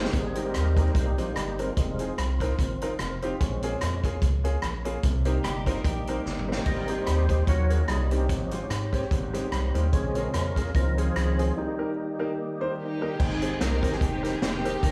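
A dreamy, reverb-soaked mix with small-room ambience opens this short, uptempo gospel passage in Ab major, moving at 147 BPM in 4/4 with a light swing on the eighths and a reverent, uplifting mood. An overdriven tonewheel organ, gritty and full with percussive second-harmonic attack, slow rotary speaker and chorus vibrato, carries a solo over sustained chords from 0.1 seconds, with a drum fill at about 6.3 seconds and a break at 11.6 seconds. Beneath it, a clear grand piano with audible action noise and long sustain plays accompaniment, while a rubbery, hollow square-wave bass with a fast filter pluck bounces along in the low register. The swinging big-band drum kit sits up front yet sounds roomy, with a boomy kick, medium-tuned snare, rim clicks, hi-hat, toms and crash cymbal. A clean, compressed electric guitar with analog chorus adds a brief picked second line around 5.4 seconds, and near the close a bowed, intimate string section with soft attack, vibrato and analog delay takes the melody as the harmony returns to Abmaj7.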